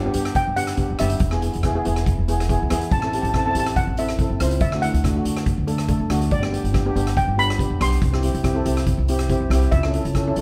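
Set back in a room with light reverb, this festive, bouncy calypso excerpt carries a shimmering lead steel pan melody over a dark, smooth double-seconds pan accompaniment played up front with medium rubber sticks, a woody, thumpy pizzicato upright bass on steel strings, and an airy, polished street-band drum kit of hi-hat, boomy kick and rim click, moving through G, E, Am and D before turning to C and A/C#.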